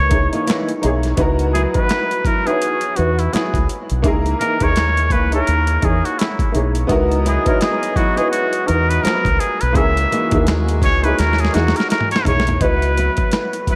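This smooth, late-night R&B and neo-soul excerpt, with a gentle 16th-note swing, is built around an up-front muted trumpet: its nasal, breathy tone carries light vibrato and scooped notes, floats in a diffuse ambient delay, and takes a whispered, intimate solo from 1.2 s. Beneath it sit a worn, woody, slightly detuned upright piano with ensemble chorus, a dark, round, punchy fingered electric bass, and a gritty, compressed, overdriven boom bap kit with a thumpy kick, finger snaps and a drum fill at 11.2 s. A fingerpicked flamenco guitar sits far back in the delay, a mellow, tight horn section in octave doubling adds stabs from 6.9 s, and a long plate reverb soaks the whole mix in a dreamy haze.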